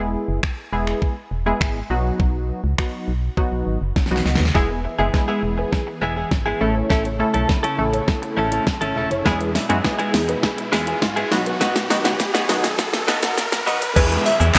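Dance-pop at 102 BPM in E major, summery and upbeat, with a straight 4/4 feel. A punchy, detuned sawtooth polysynth comp with chorus and a hollow, organ-like FM bass open together, both pumping against the sidechain, and a smooth R&B drum kit with a knocking kick, fat snare, snaps, claps and shaker joins at 0.4 seconds, sitting up front in a small-room sound. During a drum fill, a clean, compressed electric guitar riff with lush chorus arrives at 4.5 seconds, joined by a very quiet vintage string machine of violas holding mellow chords and a dark, thumb-plucked flamenco guitar playing arpeggios high above with audible finger squeak. From 4.6 seconds the passage becomes a long build-up under a filter sweep, with an electronic riser and downlifter rising in the background from 7.6 seconds as the chords move through E, A, E and B. Just as the section turns back to E at 14.0 seconds, a catchy, detuned square-wave unison lead with vibrato breaks in briefly, all set in a moderate, lush hall reverb.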